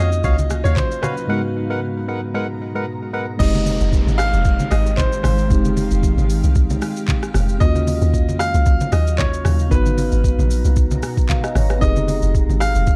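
A dark, late-night amapiano excerpt with a hypnotic, swung groove, anchored by a deep, round log drum bass and a produced R&B drum kit of soft kick, smooth hi-hat, rim click, handclaps, shaker and crash, both sitting up front. A clear, polished baby grand piano carries the melody with delay over a mellow tine electric piano and a blurred, detuned granular pad that pumps under sidechain, while a hollow, chorused organ stab punctuates the opening until 3.3 seconds. The drop lands at 3.4 seconds as a background downlifter sweeps in, and damped, low-tuned congas tick along in the background.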